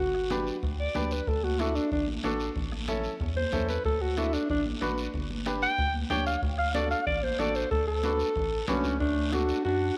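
Festive and danceable, this cumbia excerpt moves at 186 BPM in D major, with a breathy alto saxophone taking a smooth, vibrato-laced pop-style solo up front over chords moving from G through D and A. A rubbery, hollow square-wave bass bounces beneath a bright upright piano whose woody, slightly detuned tone carries audible action noise, while a soft-beater bombo, distant high-tuned congas struck with hard hands, and a raspy, close guiro drive the groove under moderate plate reverb. Near the end, at 8.7 seconds, a mellow clarinet slips in quietly with scooped, jazz-style notes.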